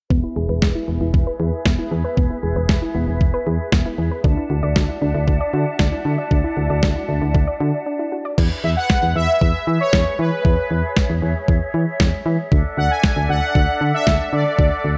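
A steady, straight 4/4 pulse at 116 BPM drives this wistful yet bright synth-pop passage in E mixolydian, cut from a longer piece, with a detuned 8-bit drum machine up front supplying a thumpy kick, medium-tuned snare and crash cymbal with a tape-warm, sampler-style character. Beneath it, a solid FM bass sits up front with a punchy, round tone that has a fast attack and then decays, while a distant large flute ensemble holds pure, vibrato-tinged sustained chords through a low-pass filter as the harmony moves between E and Dadd9. A soft, round pluck spins gentle arpeggios coloured by chorus and analog delay under a filter sweep in the opening section, dropping out at 8.3 seconds during a short break. From 8.6 seconds an analog synth brass lead takes the melody, its bold, fat, nasal sawtooth voice carrying chorus and vibrato at the front of the mix. The whole sits in a moderately lush hall reverb with a dark production that keeps the top end soft.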